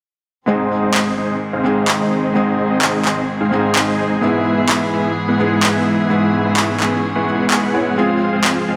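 A lush hall reverb surrounds this short, uplifting festival progressive house cut at 128 BPM in Ab major, where a huge, detuned supersaw riff sits up front with a low-pass filter and tape echo. Beneath it, a felt-muted upright piano adds soft, intimate accompaniment with audible action noise and its own tape echo, while a dark, reedy chamber string section holds bowed chords with a gut-string tone. Layered electronic handclaps enter at 0.9 seconds in a small room ambience as the harmony moves from Ab through E/G# to Fm at 8.0 seconds, giving the passage a euphoric lift.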